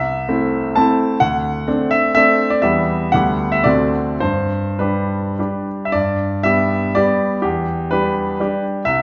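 A solo grand piano opens on an Am/C chord and moves through D7 toward G major, setting a romantic classical dance in triple time with dotted rhythms. The mood is rustic and proud, and the pulse breathes freely with rubato, ranging from 100 to 137 BPM in 3/4. The piano sound is brilliant and up front, spanning C2 to A5, and it sits in a wet recital hall reverb with a 1.3-second decay. The opening phrase runs to 5.9 seconds, resolving through Em, G/D and D7 to G at 4.2 seconds, before it begins again and touches Em7 at 7.4 seconds. Tuned to A4 = 441 Hz, this nine-second passage is cut from a longer piece.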